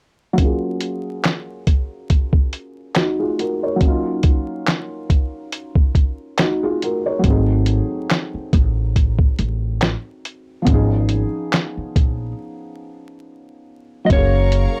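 A felt-muted upright piano, soft, dark and up front with a thick felt tone and a filter sweep, opens this dreamy, nostalgic lo-fi hip hop piece in F# major at 0.3 s. It is joined by a compressed sampler-style drum kit with thumpy kick, fat snare, hi-hat and handclaps, swung lightly at 70 BPM over F#maj7. A woody pizzicato upright bass arrives at 7.2 s as the harmony moves through G#7b9 and C#7/G#, followed by a break. At 14.1 s a clean, fingered electric guitar melody and a lush, bright bowed string section with vibrato enter on F#maj7, all within a dry, gritty recording laced with vinyl crackle.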